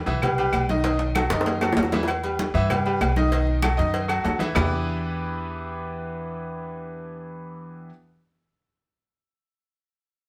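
Salsa at a fiery, driving 194 BPM in E minor, cut from a longer piece, with a brilliant, worn concert grand piano up front, its action noise audible and its long sustain ringing over Em and B7 changes, beside a woody pizzicato upright bass, while ringing agogo bells and timbales, tight high-tuned cowbell and bongos, thin-skinned congas and saturated claves drive the groove through a drum fill from 0.8 to 2.1 seconds before the percussion stops at 4.6 seconds, leaving piano and bass to close on Em7 in a moderate studio room where the band plays live together.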